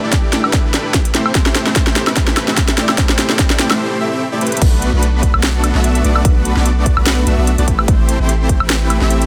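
A lightly reverberant, up-front future bass excerpt cut from a longer piece, emotional and dreamy in mood, moving at 147 BPM in a half-time feel with a gentle swing on the sixteenths. A huge, thick detuned supersaw riff with a sub octave, vibrato and sidechain pumping plays from the start, ranging from A3 to E5 over chords that move from G69 to Am7, then Bm7 and back to Am7. A punchy, layered electronic kick and a trap kit with a sharp snare, metallic hats, crash cymbal and woodblock sit in a studio reverb, driving a build-up with a drum fill before a short break around 3.8 seconds. At 4.6 seconds the drop arrives as a deep, mellow 808-style sine bass enters between A1 and B1, its long decaying notes pumping with sidechain compression. The drop carries on to the end of the clip at 9.3 seconds, with the kick dropping out shortly before, at 8.6 seconds.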